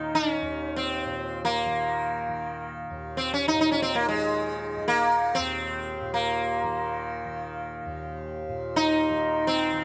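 Meditative and introspective, this brief Hindustani classical passage places a bright, plectrum-plucked sitar up front, its melody ringing with sympathetic strings for the full 9.8 seconds. Beneath it, a softly plucked tanpura holds a low, buzzing drone well back in the balance. Light reverb and close, detailed microphones keep the sitar's shimmer intimate.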